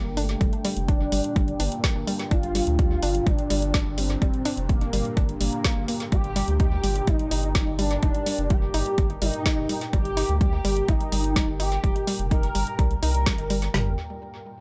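A steady pulse at 126 BPM drives this dramatic, driving melodic techno passage in G minor, cut from a longer piece and sitting in a drop that moves from Gm to Eb at 6.1 seconds and returns to Gm at 13.7. Two layered deep house kits carry the groove: one up front with a deep kick, woody snare and toms in a small room ambience, the other adding dark hats and snare touched with tape echo. Beneath them a round analog bass with a nasal, filter-plucked edge pumps against the kick, while a woody wave-folded pluck spins chorused, tape-echoed arpeggios with a percussive, organic bite. A smooth portamento lead sings the melody with vibrato, ensemble chorus and analog delay, gliding expressively over a moody, detuned pad that breathes in the background through its own reverb and sidechain pumping. A very quiet swarming drone, granular and tense, enters at 0.6 seconds and lends the echo-heavy digital ambience an evolving, warbling undercurrent.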